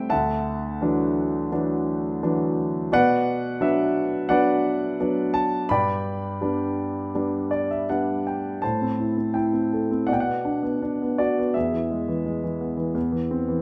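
Classical solo piano in A dorian at a rubato 84 BPM, this cool, brooding fragment places an intimate, up-front grand piano with audible action noise and long sustain in a moderate recital hall, moving from Dadd9 through Bm and G to a fill at 7.1 seconds before a new passage at 8.6 seconds turns through Am, Bm and E to close on Eaug.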